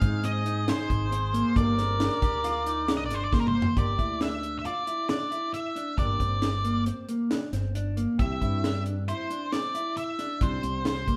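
A stone room's reverb gives this live band recording a wet, enclosed sound, and the fragment is cut from a longer progressive instrumental in an uneven 5/4 with a straight, tense and intricate feel. Up front, an octave-fuzz lead guitar carries the melody with a picked, distorted, dark tone. A soft-attacked flugelhorn plays a jazz-style second line that ends at 3.5 s. Underneath, a mellow electric guitar plays clean, compressed, fingered arpeggios, and a hollow-body jazz guitar adds background accompaniment. A round, punchy fretless bass anchors the low end, and a dry reggae kit with a high-tuned snare and tight kick plays a fill at 3.3 s before the music moves into a dorian-coloured passage at 3.8 s, with the harmony shifting from Ab to Gm and later to C.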